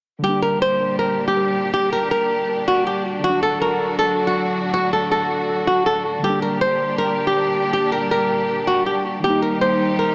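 From 0.2 seconds, a fingerpicked acoustic flamenco guitar carries the melody up front, joined at once by muted, felt-like synth keys and a lush bowed string section. This hard-hitting yet melancholic hip hop piece, cut from a longer work, moves at 160 BPM in 4/4 with a half-time feel, set in G harmonic minor with tuning at A4 = 438 Hz. The guitar has a warm tone coloured by analog delay. Beneath it, the soft, dark synth keys blend triangle and sawtooth tones with a noise layer, giving fast-attack, decaying notes that are thickened by chorus and analog delay. The studio strings hold smooth, even sustained chords with vibrato, moving through G minor, D, G minor and E-flat. A moderate plate reverb and an echo-heavy mix wrap the parts in a small-speaker sound.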